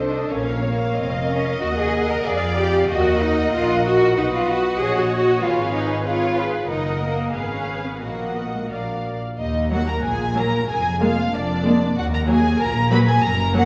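A quick, stormy classical-period movement for string orchestra opens with all five sections bowing together at 94 BPM in a rubato 2/4, settling into Eb minor from 4.2 s. A dark, close violin section carries the melody with light vibrato and a soft attack, while a second violin section adds a lush, expressive line with portamento, over a rich, even viola accompaniment and a bass of smooth cellos and clear, distant double basses. Heard from further back in a reverberant scoring stage, the urgent passage shifts into a new section at 9.4 s, and the recording is cut from a longer piece.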